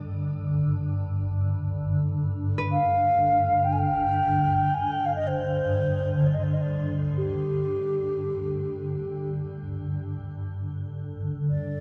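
A dark, cavernous church reverb with a three-second tail wraps this short, haunting meditation, cut from a longer piece and floating in free time with a world-music calm. A granular cloud pad opens the recording at 0.0 seconds as a low drone between G2 and D3: detuned, blurred and full-bodied, it evolves slowly through its own built-in reverb with a soft onset and a long release. Around 2.7 seconds a hollow alto flute enters up front with a pure, gentle attack and vibrato, carrying the melody through a shimmer reverb that lends it a distant, ghostly air. Just before it, a concert harp joins far in the background, fingerpicking a ringing B4 texture through its own shimmer reverb until it falls away at 10.5 seconds. The pad and flute then carry on together to the close of the excerpt, keeping the mood still and contemplative.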